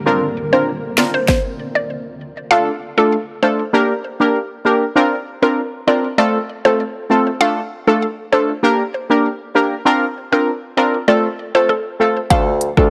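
Dancehall in D minor at 98 BPM, hypnotic and bouncy, opens with a blurred, evolving granular cloud pad beneath punchy, nasal synth brass stabs with chorus and a hollow, detuned square pluck melody with chorus and delay, while an electronic afro-pop kit with deep kick and sharp snare hits briefly before a stop at 1.3 seconds, then returns alongside a distant, mellow bassoon with light vibrato at 12.3 seconds as the chords cycle through Dm, Gm, Bbadd9 and F/A in light reverb.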